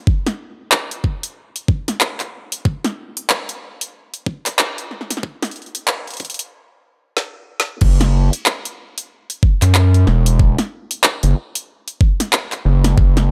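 A gritty, saturated synth bass enters at the drop at 7.8 seconds: an aggressive, evolving tone built from square, sawtooth and sine waves with oscillator sync and a resonant edge, its fast attack and sustained notes ranging from E1 to F#2. Before that, this playful, funky glitch hop cut from a longer piece spends its opening stretch on a build-up under a filter sweep, carried by an up-front, overdriven electronic kick with a knocking punch. A layered drum and bass kit runs alongside it, with a woody snare, bright hi-hats, handclaps and crash cymbal, all overdriven and set in a touch of studio ambience. A drum fill from 7.2 seconds leads into the drop. The groove sits at 93 BPM in 4/4 with a 60% swing on the sixteenths, tuned to A4 = 439 Hz. The mix is dry, with little reverb and a high-pass filter that trims the lowest end.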